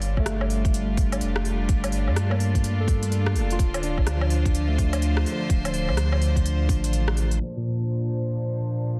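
Bowed chamber strings, a round sine sub bass and a garage drum kit open this melancholic, wistful future garage excerpt together, with swung sixteenths giving the groove its lilt. The strings hold soft-attack, sul tasto chords that float close and pure, pumping gently against the beat, while the deep sub bass sits up front with tube saturation and fast-attack, sustained notes. A tight, tape-coloured electronic kick joins at 0.2 s alongside a bright, barky tine electric piano whose clean, direct tone passes through tape echo and a sweeping low-pass filter. The kit adds crisp hats, rim clicks and woodblock, with soft clipping on the snare and a large-room re-recording behind it. The harmony moves from Gm7 to Dm7, and at 7.4 s the bass stops as the music settles onto a Bbadd9 chord under a fresh filter sweep, the kick having already dropped out at 6.8 s. Light reverb, vinyl crackle and a dense, heavily limited master wrap the whole mix in a hazy, muted sheen.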